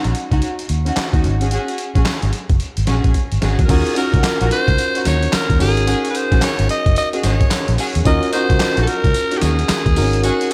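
Punchy and bouncy, this new jack swing R&B excerpt struts at 110 BPM in Eb dorian with a swung sixteenth feel, built on a gritty, pitched-down boom bap sampler-style kit with a thumpy kick, handclaps, tambourine and crash, a round, foam-muted fingered electric bass sitting up front, and dark, woody bowed string stabs carrying slapback echo over Ebm7 and Ab7sus4. After a drum fill at 3.1 seconds, a raspy, edgy alto saxophone takes the melody at 3.6 seconds with scooped notes and light vibrato, joined at 3.7 seconds by a clean tine electric piano through a combo amp, both touched with slapback echo. A lush hall reverb gives the whole mix a big arena sound.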